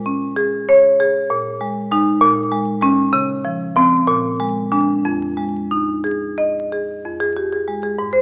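The music moves in 6/8, stretched and loosened by a free rubato that gives this brief fragment of a longer contemporary classical piece a hypnotic, reflective feel. A solo marimba played with medium hard mallets carries everything, its rosewood bars sounding woody and dark as they range from the low F2 up to Eb5. The harmony drifts through minor-seventh and suspended colours, settling on Fm7 at 5.0 seconds before opening onto Fmadd9 at 7.1 seconds for the short closing passage. The instrument sits up front in a moderate recital hall reverb, tuned to A4 = 436 Hz. A layer of vinyl crackle and a narrow AM radio tone give the whole recording a faded, vintage character.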